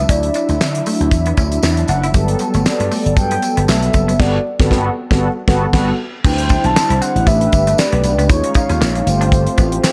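Smooth and feel-good, this short cut of early-eighties boogie funk rides a lightly swung sixteenth groove, with a dry, damped 70s drum kit up front (fat snare, tight kick, hi-hat, handclaps and crash cymbal), a bright, punchy slap bass and a jingly tambourine sitting in the background. A round, horn-like synth lead carries the melody with vibrato and tape echo over brassy, nasal synth brass chords, while a clean, compressed semi-hollow electric guitar picks a riff in the background. The band hits accents from 4.2 to 6.2 seconds, and at 6.2 seconds a very quiet, shimmering pulse-width pad enters as the harmony moves into a run of suspended ninth chords.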